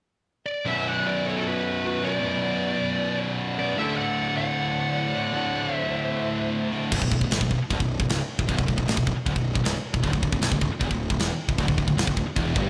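Heavy metal in B minor at 154 BPM, this excerpt cut from a longer piece feels heavy and relentless, with a big arena sound wrapped in a lush hall reverb. Two high-gain lead guitars open almost at once, a dark, up-front melody joined by a second line further back, both distorted and touched with slapback echo, while a compressed distorted electric guitar and a scooped high-gain guitar drive a low riff beneath them over Bm and D. The leads fall away at 6.5 seconds, and at 6.9 seconds a growly fuzz picked bass and a tight metal drum kit arrive together. The kit sits up front with bright cymbals, a medium-tuned snare and a tight kick, its crash, kick and snare joining the riffing guitars as the chords move from Bm to D5. The two rhythm guitars and bass carry on to the close at 12.7 seconds.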